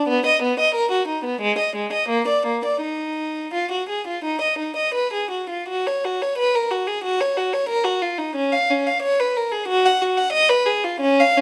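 A single bowed violin opens at once, playing alone in a classical, baroque-style suite movement for unaccompanied violin. The tone is rich and reedy, with the gut-string character of period-style playing, and the instrument sits close and up front. The phrasing is flowing and introspective, pushing and pulling in free rubato over a four-beat metre and ranging from Ab3 up to F#5. The opening material returns from 5.7 seconds, giving this short passage, cut from a longer piece, a sense of patient restatement. A moderate stone-room reverb lends the single player a natural sense of space around the bow.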